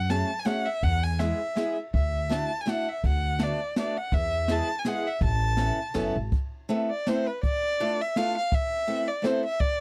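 A bowed violin with focused vibrato and a woody, thumpy pizzicato upright bass open this nostalgic, bittersweet musette waltz at 164 BPM in a swung 3/4, joined almost at once by a bright, boxy picked steel-string acoustic guitar and a brushed jazz kit with a boomy kick and dark cymbals, before the bass drops out at 6.3 seconds as the harmony turns from A major to A minor, all captured in a dry, close 1970s-style studio sound.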